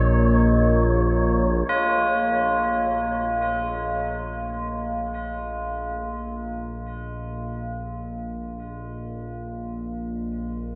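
A huge, reverb-soaked space with an 8-second tail and a faint mains hum gives this short cut from a longer dark ambient drone a dreamy atmosphere. In free time and centred on Bb minor, tuned slightly low to A4 = 439 Hz, the mood is ominous and desolate. Up front, an analog drone of sawtooth and pulse waves with pulse-width modulation sustains low between Bb1 and Bb2 for the full 10.8 seconds, evolving and thickened by chorus, and it fades in from 1.7 s onward. Tubular bells struck with a plastic hammer ring out bright, solemn arpeggios between Eb4 and F4, trailing into a diffuse ambient delay. For the opening 1.7 seconds, a breathy, wind-like tuned noise texture hovers on Db5, its sine-based layer shadowed in its own reverb, as the harmony moves from Bbmadd11 to Bbsus4.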